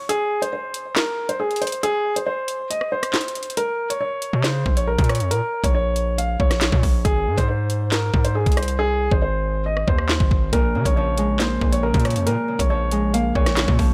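Tense and cold, this half-time drill cut opens on a dark, mellow baby grand piano melody with long sustain and a digital delay, sitting up front over an electronic kit of knocking kick, sharp snare, rim clicks, handclaps and metallic hats with a tape-warm edge. At 4.3 seconds a distorted, saturated 808-style bass arrives, heavy and aggressive with a fast attack and a noisy layer over its sine core. From 10.5 seconds a ringing, fingerpicked Celtic harp joins in the low register, all in a dry mix.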